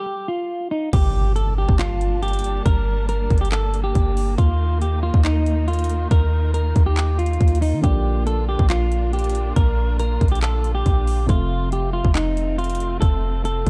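A compressed, low-pass-filtered clean electric guitar melody opens this menacing, melancholic half-time trap excerpt alongside a background swell that gives way to an electronic impact at 0.9 seconds. Then a trap kit enters up front with a hard-clipped kick, metallic hi-hats, handclaps and crash, over a boomy sine-like 808 bass and distant, lush bowed strings holding sustained chords through Gmadd9, Ebsus2, Bb and F. At 7.8 seconds a soft, felt-muted upright piano slips in behind, filtered and intimate, and the whole mix stays dry.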